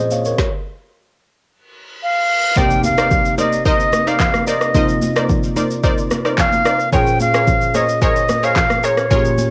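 A straight 4/4 amapiano groove at 110 BPM drives this late-night, hypnotic excerpt in C phrygian. An electronic afro-pop kit with a deep kick, woody snare, rim clicks, handclaps and shaker sits up front with overdrive, over a worn, slightly out-of-tune tine electric piano with cassette-tape colour, and a stop from 0.4 to 2.6 seconds gives way to a reverse cymbal leading into an impact. From 2.0 seconds an airy, reedy concert flute carries the melody up front with tape echo, joined at 2.6 seconds by round, detuned sawtooth pluck stabs with chorus and filter sweep and by ringing, high-tuned congas in the background, as the chords move from Bbm9 to Cm9 and back, all under light digital ambience with a home-cassette feel.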